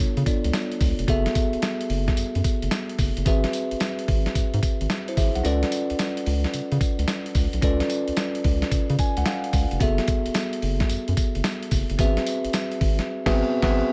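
Swung sixteenths in 4/4 drive this punchy, slick new jack swing excerpt, with a gritty, compressed sampler-style kit laying down a thumpy kick, medium-tuned snare, hi-hat, tambourine and crash, all sounding re-recorded in a large room. A round, deep analog bass with a fast attack sits under a bell-like, bright tine electric piano voicing altered dominant and minor eleventh chords. The kick drops out from 5.4 to 6.5 seconds, the electric piano takes a short fill at 8.7 seconds, and the band closes on an accent at 13.1 seconds in an otherwise dry, up-front mix.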